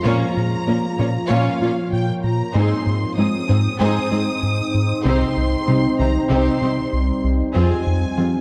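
Dark and reverberant, this cut from a cinematic hybrid orchestral and electronic film score feels vast and relentless, as a rubbery square-wave bass riff drives beneath a deep, detuned ambient pad, a faint round pluck arpeggio, mellow French horn chords, a rich viola section, a very quiet cello section on the bass line, and a background studio violin section on a second line, while a lush symphonic violin melody sings with vibrato and portamento over the chords Bbm, Ab, Cm and Fm.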